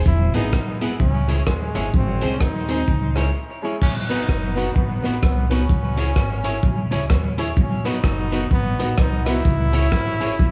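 A swung four-beat ska groove drives this mischievous, energetic clip cut from a longer piece. It is anchored by a crunchy breakbeat drum kit of kick, hi-hat, rim click and crash that sits up front, with a tight, saturated, gritty sound and dark, rolled-off cymbals. Beneath it a pizzicato upright bass adds a woody, growly low end, while a brilliant trombone carries the solo melody with light vibrato and a dub echo trailing behind it. A bright, clean semi-hollow electric guitar plays accompaniment, also treated with dub echo, and a natural-sounding upright piano with long sustain adds stabs from the background. After a short break at 3.4 seconds the harmony moves on, and a grainy cabasa with its own dub echo slips in at 3.8 seconds, tucked quietly behind the band, while a small room reverb and a layer of vinyl crackle give the recording a worn, intimate feel.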